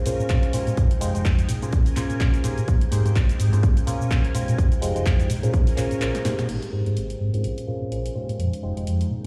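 Filtered disco house with a sensual, funky swing, built on a reedy, lightly overdriven electric piano with phaser and gritty sampler texture, lush sawtooth string-machine chords with ensemble chorus, and a dark, round fingered electric bass, all three pumping against the beat through a low-pass filter. A punchy, tape-tinged analog drum machine supplies claps, hi-hat, shaker, snare and crash, while a layered, up-front electronic kick drives the groove until it drops out at 5.6 seconds. After a brief break and drum fill, a band accent at 6.4 seconds leads into a filter sweep, all set in a big, reverberant room sound.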